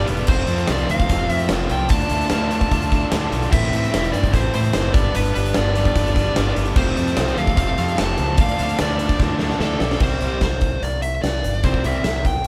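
Straight 4/4 rhythm drives this swaggering classic rock fragment. An up-front acoustic kit with a fat snare, punchy kick, hi-hat and crash powers a growling, overdriven fingered bass, a bright, crunchy picked guitar riff, and a cranked stack guitar tucked into the background, while a compressed fuzz lead guitar carries the melody over F, Dm, Am and G changes in a small live room, until a drum fill at 9.2 seconds leads into a C chord at 10.0 seconds.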